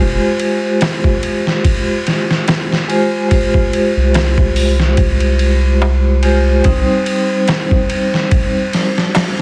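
Trip hop, brooding and hypnotic with a swung 16th feel: an up-front vintage vibraphone rings out metallic tones with tremolo and tape echo over a round, dark analog bass that stops at 6.9 s, while a gritty, pitched-down sampler-style kit with a thumpy kick enters at 0.4 s and a crisp metal-shell darbuka sits in the background, framed by light digital ambience, vinyl crackle and a dense, heavily limited master as the harmony moves from Fmadd9 to Cm at 6.6 s.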